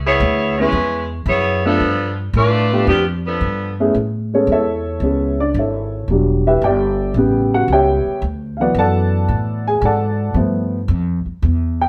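A warm upright piano takes a solo from 3.9 seconds onward in this joyful, energetic big band swing excerpt, its natural, woody tone sitting up front at 112 BPM in A major. A mellow saxophone section opens the melody, playing as a tight section with vibrato and a soft, vintage attack, stopping at 3.8 seconds, while a growly pizzicato upright bass with steel strings runs beneath. The band plays live in one room with a short, wet studio reverb, moving through chords such as C#m7, Amaj7 and D6.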